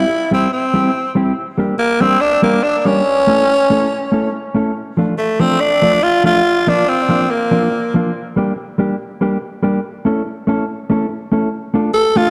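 A raspy, growling tenor saxophone carries the melody up front with vibrato and dub echo over a mellow, clean electric guitar soaked in spring reverb, in this mischievous, energetic ska excerpt in D minor at 142 BPM with a light swing, the saxophone falling silent at 7.9 seconds and returning briefly at 11.9 seconds within a dark echo-chamber ambience.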